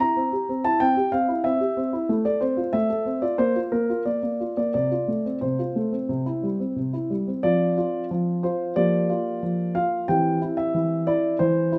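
Close, detailed microphones place a warm concert grand piano up front, its deep bass ringing into a moderate recital-hall reverb. This playful, elegant classical-period sonatina has the solo piano carrying everything on its own, moving into a second section at 7.4 seconds before the passage, cut from a longer piece, breaks off at 11.8 seconds.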